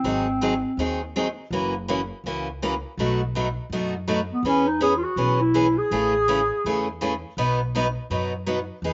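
A swung 4/4 pulse at 164 BPM drives this lively, charming snippet of acoustic string swing in the jazz manouche style, cut from a longer piece. The picked steel-string acoustic guitar plays accompaniment throughout, bright and up front with fresh strings and a slapback echo. The upright bass holds the bottom the whole way, plucked on gut strings with a woody, dark, thumpy tone sitting lower in the mix. A breathy clarinet carries the melody in short phrases, from 0.0 to 1.0 seconds and again from 4.3 to 6.9 seconds, its mellow subtone marked by vibrato, soft attacks and scooped notes, sounding whispered and intimate despite a distant, roomy quality, also touched with slapback echo. The harmony moves through G#7, F#7, B7, E6 and Amaj7 before landing on B, and the dry outdoor sound, with little reverb and a muted top end, keeps the playing close and unadorned.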